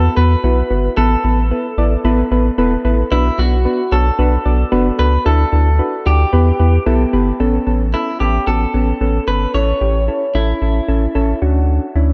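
A slightly broken-up electric guitar carries the melody through tape echo, its compressed, picked tone singing over this driving, melancholic synth-pop excerpt at 112 BPM until it drops out at 11.4 s. Soft, airy electric-piano-like synth keys with chorus supply the accompaniment up front, while a deep analog bass with a fast, filter-plucked attack anchors the low end throughout. The dark production sits in a lush hall reverb as the harmony moves from Esus2 through Bm and Em, settling on Dmaj7 at the close.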